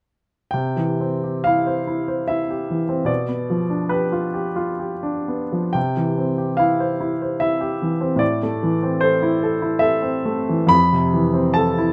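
This classical excerpt is a romantic nocturne for solo piano in C major, tender and serene in mood, moving in 3/4 at a gently flexible 59 to 77 BPM with an unhurried rubato feel. A baby grand piano carries the whole piece alone from 0.5 s to 11.9 s, spanning F2 to B5. Its tone is clear and polished, sitting up front with a present quality. The harmony moves from C through G7/B and back to C, then turns to A minor and arrives at Fmaj7 at 10.7 s. A moderate studio reverb gives the piano a soft halo of room sound, and the fragment is taken from a longer performance.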